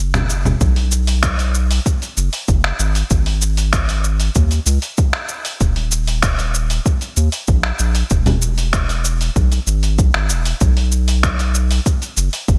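Relaxed and blissful, this sunset chillout piece in B major moves at an easy 96 BPM in a straight 4/4, a short cut from a longer track. A round analog bass opens the recording, deep and dark with a nasal, sine-like tone, fast attack and sustained notes, sitting up front in the low register. Just after, a dusty soul sampler-style kit joins with congas, finger snaps, hi-hat and shaker, gritty and compressed with a tape-like character and a gated reverb. At 0.6 s an electronic kick drum arrives, layered and overdriven, its deep punch carrying the air of a large room while staying close and forward. The overall sound is bright in a 1980s digital style, with little reverb.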